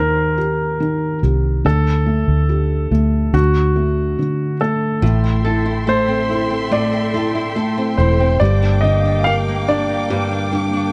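In a straight, unhurried 4/4, this melancholic pop fragment opens with a clear, naturally sustaining grand piano carrying the melody up front, its action noise audible, over a soft, thick-felt upright piano accompaniment and a round, foam-muted electric bass that sits prominently in the mix. At 5.0 seconds the mood deepens as a lush, bowed string section adds sustained chords with expressive vibrato, and a fingerpicked flamenco guitar spins arpeggios through a digital delay. The production is dark and warm, wrapped in light reverb, and the emotional passage breaks off as part of a longer piece.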